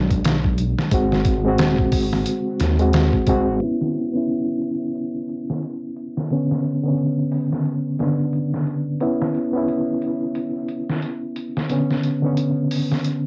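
A swung 4/4 groove at 89 BPM opens this hypnotic, smoky trip hop excerpt, carried by a sampler-style drum kit that sounds compressed, pitched down and gritty, with a thumpy kick, a medium-tuned snare and filtered hats set up front in a small room. A reedy electric piano, clean and heard as if through its built-in speakers, plays the chords from the start, treated with harmonic tremolo, tape echo and a cassette character. Underneath, a dark, detuned saw bass rumbles deep and saturated with a beating edge, but it drops out at 3.6 seconds. At that point the music settles into B minor, alternating between suspended and minor add-nine chords while a filter sweep runs through the rest of the passage. The whole recording has the muffled feel of a home cassette recording with light reverb.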